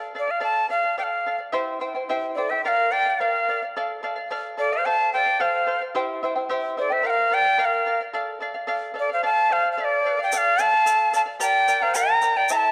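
Andean folk in D minor at 109 BPM in a straight 2/4, earthy and wistful, cut from a longer piece: a fingerpicked charango with shimmering double strings accompanies throughout, while an up-front, reedy cane quena with a crisp, chiffy attack, vibrato and slapback echo carries the melody. From 2.4 s a distant, breathy large wooden quena adds a bright second line, and at 10.3 s, as a new section begins, a grainy tube shaker joins. The ensemble sits in a wet echo-chamber reverb with small-room ambience, moving through Dm, C, Bb and F before turning to Gm.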